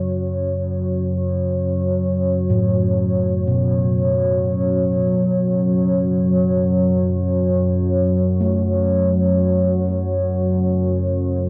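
Dark ambient drone in free time and F# minor, desolate and cavernous, where an ominous, wave-folded rumbling drone and a moody, chorused, detuned sawtooth pad with a sub octave hold up front from the start, bronze gamelan-type bossed gongs with delay enter in the background at 2.5 s playing beating, airy arpeggios, and the whole fragment sits in a huge wet reverb with the worn, warbly pitch drift of old cassette tape.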